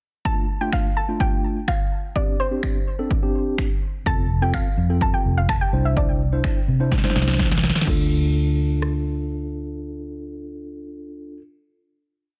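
Dance-pop with an energetic, driving feel, built on a punchy, tape-warm house drum kit playing a four-on-the-floor beat up front, with a fill leading into the final chord at 7.9 seconds. A soft, round pluck carries a motif-based melody of call phrases through chorus and tape echo, while a mellow tine electric piano adds syncopated close-voiced chords with sidechain pumping. From 4.1 seconds a dark, foam-muted fingered electric bass joins with a syncopated figure, also pumping, and it plays through the final chord with the piano until 11.4 seconds, all set in light reverb and a dense, heavily limited master.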